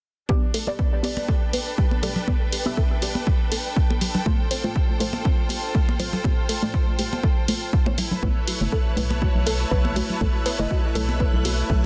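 Hypnotic and smooth, this deep house passage moves at 121 BPM in 4/4 with a light swing on the sixteenths, cut from a longer piece. A dry, punchy analog kick sits up front, joined by a dry electronic hi-hat and bright, close congas struck with hard hands. A warbling, lo-fi pluck plays arpeggios in the background, its filter sweeping across the whole passage, colored by chorus, tape echo and 12-bit sampler grit, while a muted, deep dub chord stab with phaser and tape echo pumps alongside it. A lush, bowed studio string section with vibrato adds an intense texture throughout, and the chords move from A9sus4 to G9sus4, then to B9sus4 at 8.0 seconds. At 8.2 seconds a dark, hollow organ-like FM bass arrives, along with a soft, flute-like pad set back in the mix and a shimmering vintage string machine playing violins high above with ensemble chorus. The sound carries light reverb and a dense, heavily limited modern master, with sidechain pumping breathing through the melodic parts.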